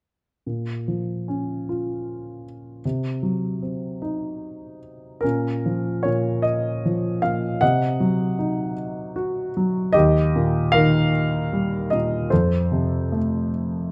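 Classical solo piano in B-flat minor: a wistful, reflective excerpt in a slow 6/8 at about 51 beats per minute, its uneven pulse pulled about by rubato. A dark grand piano plays alone from 0.5 to 13.9 seconds. Its worn, mellow, intimate tone sits up front under close, detailed microphones, with audible action noise, short sustain and a light reverb. The harmony moves from B-flat minor to C diminished, then a new section at 5.2 seconds restates that pair before moving to E-flat and ending on F.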